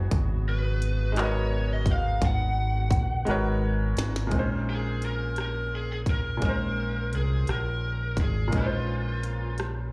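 Slow six-eight R&B with a sultry, yearning mood, this excerpt sounds like a live club gig heard through the venue's PA: a clear, slightly worn baby grand piano with slapback echo sits over a round, dark dub bass up front and a glitchy, tape-warm drum kit of tight kick, tiny snare, clicky hats, handclaps and rim clicks. A hollow, flute-like pad thickened with chorus hums in the background until a drum fill beginning at 3.3 seconds closes the opening stretch. The picked, overdriven lead guitar from a small cranked amp, also touched with slapback echo, carries the melody from 0.5 seconds and then stretches into a solo from 4.3 seconds to the end.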